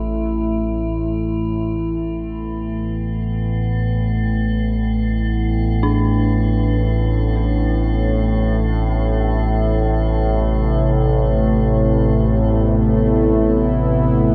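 Set in free time, this dark ambient drone in A minor drifts with a desolate, shadowy mood, cut from a longer piece. A sawtooth analog drone sits up front in the low register, its vintage, warbling tone evolving under pulse-width modulation and chorus. Around it, a metallic, inharmonic FM drone hangs eerily in the middle range with its own built-in reverb, while a mellow, detuned synth bell traces arpeggios in the background, its decaying notes colored by chorus, phaser and tape echo. The harmony moves from A5 to Amadd9 at 1.8 s, and from there the synth drone fades out. At 9.9 s a bright, sweeping resonant pad enters with sustained chords and a filter swell. A huge ambient reverb and a dark, warm production wrap the whole texture in distance.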